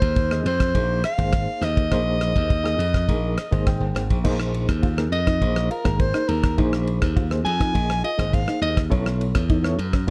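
Electric jazz fusion at 103 BPM in Bb minor, slick and funky, led by a breathy soprano saxophone whose subtone, light vibrato and scooped notes carry the melody through plate reverb and slapback echo, moving into a solo at 4.2 s before stopping at 8.8 s over sus-chord harmony. A reedy electric piano with fast tremolo comps and adds a short fill, while a glassy, punchy slap bass and a damped 70s kit with a tight kick, ride, crash, rim clicks and a rolled-off top sit up front. From 4.2 s a mellow, chorused electric guitar adds clean background stabs, all framed by a dark production with light reverb.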